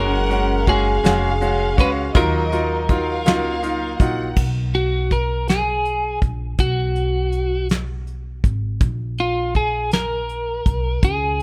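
The recording sits in a small, intimate room, with the brushed drum kit and the slide guitar up front. This melancholic, dramatic pop ballad moves slowly in 6/8 at 54 BPM with a straight feel, tuned to A4 = 445 Hz, over chords from Gbsus2 and Ebmadd9 to B5 and a rootless Abmadd9/Bb. A slightly broken-up, compressed electric slide guitar, played with fingerpicks, carries the melody throughout. Pizzicato upright bass with a woody, dark tone anchors the low end, and the soft brush kit enters at 0.3 s with dark cymbals, a fat snare and a tight kick. In the opening stretch, a lush, smooth bowed violin section with vibrato adds a second line, a brilliant grand piano with deep bass and short sustain plays accompaniment, and a picked steel-string acoustic guitar with finger squeak and delay sounds arpeggios in the background. The violins stop at 4.4 s and the acoustic guitar is gone by 4.9 s, leaving slide guitar, bass and drums to carry this excerpt of a longer piece.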